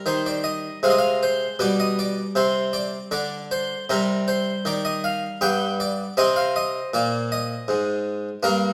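A plucked, brilliant Italian-style harpsichord with octave strings sits up front and plays alone throughout this short excerpt from a baroque-style suite movement, ranging from G2 to G5. The mood is serene and dance-like, in 3/4 at 79 BPM with a rubato feel, as the harmony moves from C minor through Ab6/C and G/B back to C minor, then to G and an Ab69 at 6.2 seconds. A stone room's reverb, with a decay of 1.3 seconds, surrounds the instrument.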